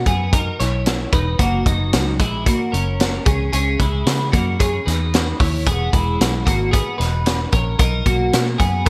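Jangly indie pop with a bright, youthful mood, where a chiming, twangy twelve-string electric guitar sits up front playing arpeggios with lush chorus and delay over E, F#, and C#m chords, while a dark, round, foam-muted fingered bass anchors the low end and a punchy vintage drum kit with a high-tuned snare, hi-hat, and gated reverb enters at 0.1 seconds, all framed by light reverb in a bright 1980s-style digital production cut from a longer piece.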